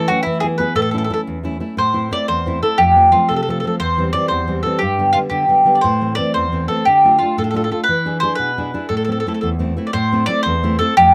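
Italian folk serenade in a straight 6/8, romantic and lively, cut from a longer piece. Up front, a mellow, round mandolin with doubled strings carries the picked melody, while a full-bodied nylon-string guitar with fresh strings fingerpicks a deep classical accompaniment beneath it. Light reverb surrounds the pair as the harmony moves from A minor through F, C and G, then D minor toward an E dominant seventh, and resolves home around 8.9 seconds.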